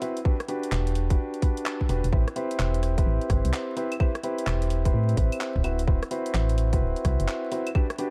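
A swung two-step groove at 128 BPM in 4/4 drives this late-night, skippy UK garage excerpt in A dorian, where a tight, up-front electronic kick joins at 0.3 seconds under a layered garage kit of claves, handclaps, rim clicks and warm hi-hats, a hollow, percussive organ-like FM bass with fast-attack, decaying notes enters at 0.7 seconds, and a dark, mellow baby grand piano plays long-sustaining stabs through dub echo over Em9, Am9 and D13 chords, all set in a dry, dark and warm production flecked with vinyl crackle.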